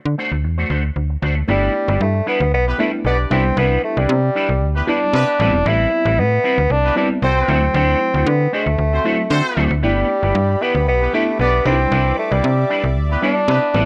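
Danceable and smooth, this funk passage, cut from a longer piece, opens on a dark, clean electric guitar riff shaped by an envelope filter and analog chorus, over a snappy, metallic slap-like FM bass sitting up front. At 1.5 seconds a warm, vintage-toned bassoon takes the solo melody with light vibrato, backed by a mellow FM electric piano with tremolo and phaser. From 2.7 seconds a punchy, tight horn section doubled in octaves adds a distant second line, and a detuned sawtooth analog pad with chorus slips into the background at 9.8 seconds, with studio reverb around the mix as the chords move through G6, Cmaj9, Am9 and D7.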